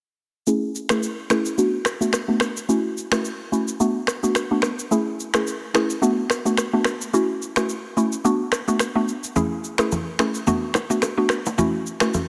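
A lightly swung sixteenth-note groove of up-front electronic shaker, finger snaps and rim click drives this joyful, sunny afrobeats excerpt, where a woody, round mallet-like synth pluck with chorus, phaser and a filter sweep cycles through Amaj7, D6, F#m7 and Bm7 chords in light digital ambience, before bright, close and dry congas and bongos played with soft hands join at 9.4 seconds.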